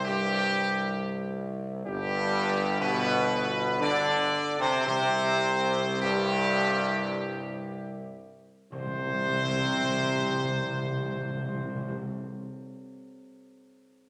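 A wet scoring-stage reverb surrounds this solemn, triumphant classical fanfare in 3/4, cut from a longer piece and slowing from 67 toward 40 BPM between 0.5 and 8.7 seconds. A clear, up-front trumpet section with light vibrato carries the melody over sustained chords from mellow, soft-attacked trombones and a French horn section set in the background, while a present tuba anchors the bass. Timpani struck with medium mallets enter close at 4.9 seconds, and the harmony moves from C5 to G and back before the chords drop away at 8.7 seconds.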